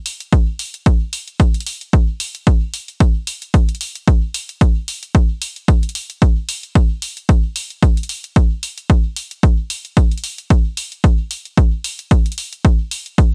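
A swung 4/4 groove at 112 BPM, with 55% swing on the sixteenths, drives this hazy, nocturnal techno fragment, taken from a longer piece. An electronic kick drum enters at 0.3 s and sits up front, punchy, dry and overdriven with an analog grit that dominates the mix. An electronic hi-hat arrives just before it at 0.1 s, also dry and overdriven but placed much lower, a faint analog sizzle beneath the kick. Both parts run together through to 13.3 s across a single unbroken section. A digital ambience lends the sound a bright, 1980s-style production sheen.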